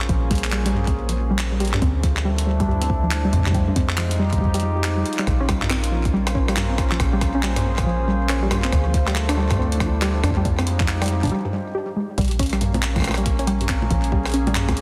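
A warbling, nostalgic pad of sustained chords opens this melancholic, cerebral IDM excerpt at 139 BPM in 4/4, its slow-attack vintage tone softened by chorus and its own reverb, with a dark, metallic FM bass sounding beneath from the first moment. A jungle sampler-style kit of congas, handclaps, hi-hat and rim click arrives alongside, pitched up, compressed and gritty, with soft clipping on the snare plus studio reverb and delay, while an electronic kick with a soft, tape-warm thump enters at 0.1 seconds. A lo-fi, dusty pluck spins arpeggios from G2 to G4, its fast-attack, wave-folded tone carrying chorus and tape echo, and the 16ths swing at 62%. The harmony cycles through Bbm9, Dm9 and Fm9 before a break at 11.3 seconds gives way to a closing section on Bbm7 from 12.2 seconds. An echo-chamber reverb of moderate size surrounds the parts, and the master is dense and heavily limited.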